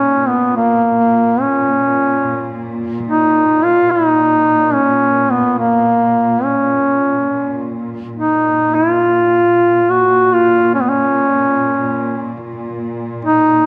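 A solo duduk sits up front with a warm, scooped folk voice, carrying a longing, solemn Caucasian lament in a loose, rubato three-beat feel. Beneath it, a studio string section holds a low bowed drone, played sul tasto with vibrato, soft attacks and a lush, smooth top. The passage is cut from a longer piece and sounds as if played back from worn cassette tape with warbly pitch drift, set in a moderate concert-hall reverb.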